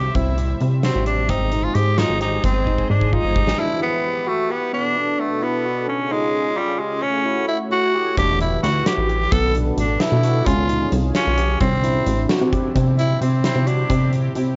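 Bright and driving, this progressive instrumental moves in a straight 5/8 at 262 BPM in eighths, cut from a longer piece and colored by a worn, warbling cassette sound with pitch drift and a dulled top end in a small room. A growling, raspy tenor saxophone carries the melody up front with light vibrato and plate reverb, taking a solo from 12.8 s to the close. Beneath it, a sweeping, resonant pad with chorus evolves slowly, while an overdriven, barky tine electric piano through a combo amp plays arpeggios with digital delay. A plucky, funky analog bass with a fast, decaying attack and a huge, punchy arena drum kit of kick, snare and hi-hat drive the opening, drop out after a drum fill ending at 3.6 s, and return at 8.2 s. The harmony moves from C and Ab into a recurring cycle of Em, Bm7 and Db before resolving through Cadd9 back to C.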